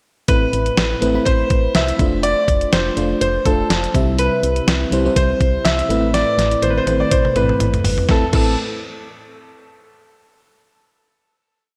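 From 0.3 s, a clear concert grand piano sings a motif-based melody through diffuse ambient delay over syncopated, glassy, chorused FM electric piano chords, a punchy, dark FM bass driving in eighth notes and a thumpy, up-front 12-bit drum machine with a fat snare and big backbeat, giving this urgent, moody 1980s-style pop piece at 123 BPM a dreamy, reverb-soaked sheen until a drum fill at 6.1 s leads into a final chord at 8.1 s.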